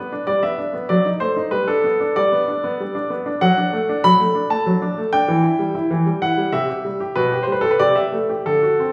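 A classical-period piano sonatina in G major, this elegant, cheerful fragment from a longer piece moves in 3/4 at 96 BPM with a rubato feel. A solo baby grand carries it from start to finish, clear and intimate, with long sustain and audible action noise. The instrument sits up front in a wet recital hall reverb, and its harmony passes from G through F#dim7, D/F#, Em and C before settling on Am7/C at 7.8 seconds.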